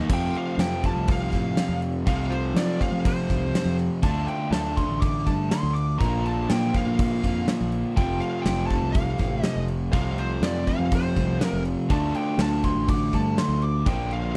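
A gated 80s drum kit sits up front with a punchy kick, medium-tuned snare, bright cymbals and crash, its airy, polished gated room giving this driving, sunny classic rock excerpt at 122 BPM in F major its snap. Two overdriven electric guitars play the riff throughout, one compressed and picked, the other crunchy and set in the background, over a round fingered electric bass, moving through F, Dm and Bb. From 0.1 seconds a smooth, dark overdriven lead guitar carries the high melody with slapback echo, all in a dry room with little reverb.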